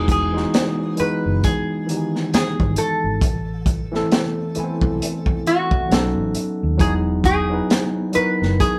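A slow, swung sixteenth-note groove in 4/4 sits under this smooth, soulful neo-soul R&B clip, cut from a longer piece. A crunchy breakbeat kit comes in at 0.1 s, placed up front with a punchy kick, a high-tuned snare and hi-hat, its sound dark, gritty and saturated with a rolled-off top, as if played in a small room. Beneath it, a vintage fingered electric bass runs through an amp, foam-muted and round, before dropping out at 8.6 s. A worn, slightly out-of-tune tine electric piano carries the accompaniment, lightly overdriven through a combo amp and sitting forward in the mix as it moves through Emaj7, Am and B7 before settling back on Emaj7. Above it all, a metal-body resonator slide guitar plays the melody with fingerpicks, its bright, metallic, nasal tone heard up close, while the band shares one room with moderate reverb.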